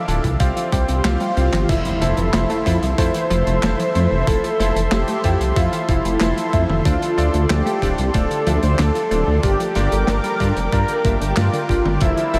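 A dreamy, reverb-soaked mix opens this romantic, uplifting synthwave excerpt at 93 BPM in F major, moving through Csus4, Fmaj7, Dm7 and Gm7. A warm, slow-attack analog pad with chorus and sidechain pumping sits in the background beside a round analog pluck playing arpeggios through a diffuse ambient delay, while a bright, clangy electric grand piano adds short stabs. Underneath, a deep, rumbling detuned saw bass with sidechain pumping sits up front beside an overdriven, thumpy electronic kick. An acoustic jazz kit with dark cymbals and a rolled-off top supplies hi-hat, snare, toms, handclaps and crash. The kick drops out from 1.0 to 1.7 s for a drum fill, and at 1.7 s a very quiet electronic impact marks the shift to Fmaj7. The melody comes from a brassy, vibrato-tinged synth brass line with chorus, cassette tape character and analog delay, entering at 1.0 s and shadowed from 1.7 s by a lush, very quiet FM electric piano layered with a soft pad.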